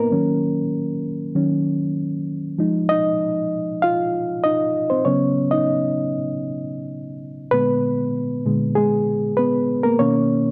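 A moderate echo-chamber reverb surrounds this dark, warm soul excerpt, cut from a longer piece, at 97 BPM in a straight 4/4. A reedy, worn electric piano sits up front and plays alone throughout, clean but slightly out of tune, heard through its built-in speakers and ranging from Bb2 to F5. Its smooth, silky harmony moves from Ebm7 through Fm7 and Db9sus4 before shifting at 7.5 seconds to Bb7b9 and closing on Bmaj9.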